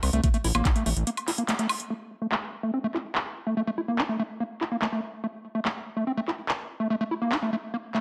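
Intense and hypnotic, this short psychedelic trance excerpt, cut from a longer piece, opens with a thick, detuned sawtooth analog bass that sits up front and stops at 1.0 seconds, joined briefly by a knocking electronic kick drum. A squelchy, gritty square-wave acid bass riff carries the music throughout, its resonant filter sweeping while sidechain pumping and tape echo give it a restless, saturated edge. Alongside it, a layered electronic drum kit of handclaps, metallic hi-hats and woodblock runs the whole way, softened by low-pass filtering and given a tape-warm, small-room character. A short break from 1.1 seconds carries a band accent at 1.5 seconds before a new section takes hold at 1.9 seconds, driven by the acid riff and the filtered percussion. A moderate digital room reverb lends the mix a compact, close ambience.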